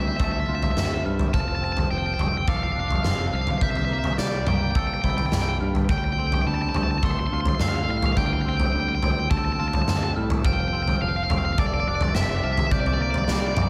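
A lightly reverberant studio sound frames this brooding, cinematic post-rock excerpt in D minor at 106 BPM, where a huge, punchy arena drum kit and a bright, crunchy overdriven guitar melody with digital delay sit up front over a direct fingered electric bass, while a twangy clean electric guitar with slapback echo arpeggiates in the background and a ringing, bell-like glockenspiel played with soft plastic mallets adds arpeggios from 0.2 s, all moving through chords such as Dm11, F6 and C6 before closing on C7sus2.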